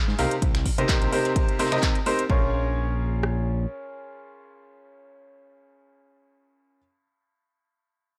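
Soulful and bittersweet, this short piano house fragment in Bb minor runs at 128 BPM with a light 16th-note swing, cut from a longer piece and opening on a drop that lasts until 2.3 seconds. A bright, brilliant baby grand carries the riff throughout, its worn, short-sustained tone sitting up front with sidechain pumping and tape echo, moving from Cm7 to Bbm7 as the music shifts into its second section at 2.3 seconds. Beneath it, a fat, detuned sawtooth bass with a filter sweep and fast attack pumps with sidechain compression before stopping at 3.7 seconds. The electronic house kit layers a punchy, tape-tinged kick and rim click with finger snaps, handclaps and metallic hi-hats, all bathed in studio reverb, while a dark, smooth brushed kit of ride cymbal and medium-tuned snare murmurs in the background with a rolled-off top. Everything sits in a small room ambience with a dry, gritty hardware character.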